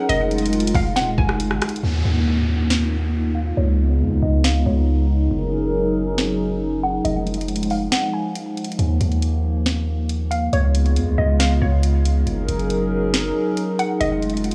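A deep, long-sustained 808-style bass sits up front in this ethereal, spacious cloud-rap hip hop excerpt at 138 BPM in half-time Eb minor, alongside a smooth R&B drum kit with a soft kick, sharp snare, rim click and tape-warm hats, a dark, flute-like pad pumping with sidechain under chorus and a low-pass filter, a bouncy, warbling square pluck melody with tape echo, and a brief electronic downlifter from 1.8 to 5.3 seconds, as a filter sweep runs from 1.8 seconds and the kick briefly drops out at 7.9 seconds over a cycle of Fm7, Ebsus2, Db7 and Gb6 in light reverb.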